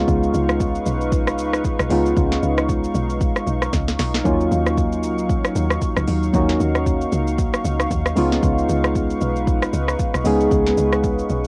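Amapiano at 115 BPM in 4/4 with a 16th-note swing, this hypnotic, deep excerpt from a longer piece moves from Db9 to Ebm9 at 4.3 seconds and back to Db9 at 8.2 seconds. Soft, round electric-piano-like synth keys sit up front with chorus and a mellow, detuned tone over a lush, warbling unison pad whose slow-attack chords pump against the beat, while a dark, percussive log drum bass sits underneath. An electronic afro-pop kit with a deep kick, sharp snare, metallic hats, rim click and shaker enters at 0.1 seconds and plays a fill at 3.7 seconds, all bathed in light reverb and the hazy character of a home cassette recording.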